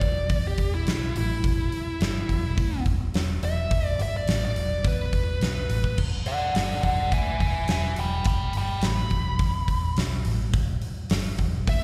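Blues rock power trio with a southern rock edge, this swaggering, raunchy cut from a longer piece sets a dark, distorted lead guitar solo with slapback echo up front over a round, foam-muted electric bass and a huge arena drum kit with a fat snare and punchy kick, all heard as a live gig through the venue's PA in a recital hall's light reverb.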